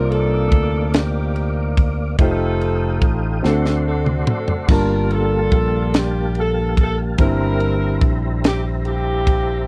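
Soulful and reverent, this slow gospel passage moves at 48 BPM in a straight 6/8, cut from a longer piece and captured in a dry, close 1970s-style studio sound with little reverb. A saxophone section carries the melody with a soft attack and light vibrato, its jazz-style ensemble tone sitting distant and roomy between Bb3 and Bb4. A clear grand piano accompanies with an intimate, natural sound and audible action noise, while a tonewheel organ holds sustained chords through a fast rotary speaker and chorus vibrato, its key click adding bite. Up front, a fingered electric bass gives dark, round, punchy low notes, and a tight funk drum kit with a high-tuned snare, snug kick, ride, splash and toms plays a fill from 3.4 to 4.7 seconds. The harmony travels from Cm11 through F9 and D7 to Gm9, settling on C7/G near the close.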